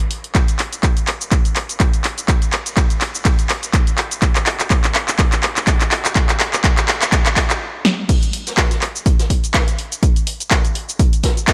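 A swung 4/4 groove at 124 BPM drives this short house excerpt, its sixteenths leaning into a loose, hypnotic, late-night feel. A punchy analog drum machine opens the cut with a dry, up-front snare, handclaps, hi-hat, shaker and crash cymbal, and an electronic kick drum joins at 0.3 seconds with a dry, punchy, up-front thump. The opening stretch is a build-up threaded with a long drum fill, then the drums stop at 7.6 seconds before the drop lands at 8.1 seconds. At that point a jazz brush drum kit slips in behind the machines, its medium-tuned snare and hi-hat brushed, distant and roomy, their tops rolled off and filtered so they sit softly in the background. Light small-room reverb and a faint mains hum surround the sound, lending a slightly lived-in edge to the otherwise crisp electronic beat.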